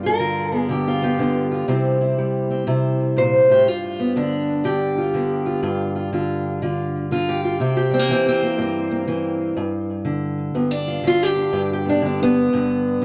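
A loping swing on the eighth notes at 122 BPM in 4/4 drives this short fragment of gritty, laid-back acoustic country blues in G mixolydian. A fingerpicked steel-string parlour guitar plays solo and up front throughout, ranging from G2 to C5 with a boxy, shadowy tone and a touch of tape echo. The harmony moves between G7 and C7 before landing on a plain G chord at 9.6 seconds. The instrument is tuned slightly below standard pitch, to A4 = 438 Hz. A moderate studio reverb and a dark, warm production give the passage a relaxed, gritty character.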